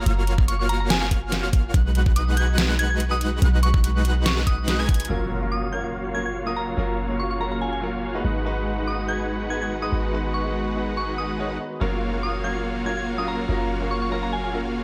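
Future bass at 143 BPM in a half-time 4/4 feel and F# major, this lush, bright passage opens on a drop where a knocking electronic kick and a dubstep kit with deep snare and metallic hats drive a thick, detuned supersaw riff, a boomy 808-style bass, a pure FM synth bell melody and dreamy arpeggios from a background lead, with the supersaw, bass, bell and lead pumping to the sidechain, before a drum fill at 4.9 seconds and an impact at 5.1 seconds usher in an intimate baby grand piano with audible action noise, a very quiet shimmering pad from 6.3 seconds, and a filter sweep on the supersaw once the drums have stopped.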